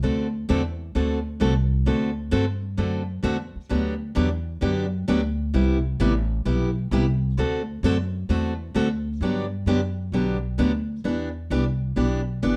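This western swing country excerpt has a playful, down-home mood and a swung lilt. A picked steel-string acoustic guitar with warm, fresh strings picks seventh and ninth chords up front, while a woody, thumpy pizzicato upright bass on gut strings holds the low end close beside it. Both play throughout in a moderate studio room, and the harmony shifts into a new section at 9.2 seconds before the clip ends.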